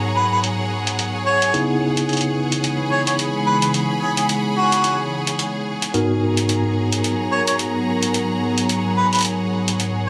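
A distant harmonica with light vibrato, 12-bit sampler grit and delay carries the melody from 0.2 s in this gritty, playful glitch hop fragment, over a warbling, detuned tape-like pad with chorus, phaser and a filter sweep, bright, clean tine electric piano stabs through a low-pass filter and delay, a lush, bowed string section sitting close, and an up-front, pitched-down electronic hi-hat, inside a moderate digital room with lossy compression artefacts as the chords move from G#m9 to C#m7 and back.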